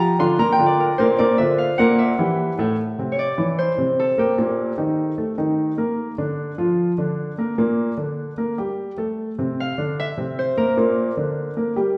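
A concert harp carries the melody in this sophisticated, lively jazz piece cut from a longer work, its ringing, fingerpicked lines taking a solo turn through the opening 2.8 seconds before pausing at 6.5 seconds and returning at 9.6 seconds. Beneath it, a warm, intimate grand piano plays accompaniment throughout, its audible action noise adding a natural touch as the harmony moves through chords like Gm69, C13 and Eb/Bb. Both instruments sit up front within a large studio's wet reverb, which gives a sense of hearing them from further back in the room.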